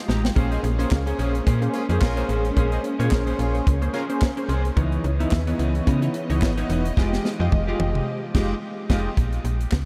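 This early-eighties boogie funk excerpt feels slick and danceable, with a lightly swung sixteenth-note groove that moves through Bbm9, Dbm9 and Fm9 chords before landing on Bbm. Up front, a tight funk drum kit with a dry, polished sound, tight kick and medium-tuned snare shares the spotlight with a snappy, metallic FM bass whose fast attack then decays. A punchy sawtooth polysynth comp with detuned, evolving filter plucks and chorus carries the accompaniment, while a clean, scooped electric guitar riff with lush chorus sits behind it. Further back, a warm, woody string section holds bowed sustained chords with vibrato, and a clear pop-style horn section adds a second line from 0.5 to 4.0 seconds. The drums open with a short fill, play another fill from 7.0 seconds, and the band hits an accent at 8.1 seconds, all set in a huge ambient reverb that gives the mix a dreamy, soaked feel.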